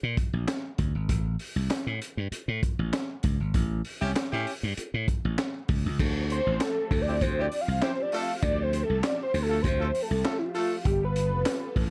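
Hypnotic and funky, this 98 BPM straight-feel funk cut in D dorian opens on a growly, bright slap bass and a crunchy breakbeat kit with a punchy kick, high-tuned snare, dark cymbals and handclaps, the whole band hitting an accent from 3.5 to 6.0 seconds as a smooth, lightly vibrato horn section enters at 4.0 seconds as a second line. From 6.0 seconds the harmony settles on Dm11 and a fat, detuned sawtooth analog lead with sub octave and vibrato takes a solo up front, while a very quiet, swirling phased string machine holds sustained chords beneath, moving to G9 near the end. The mix is dry, with a gritty, saturated, rolled-off character on the drums.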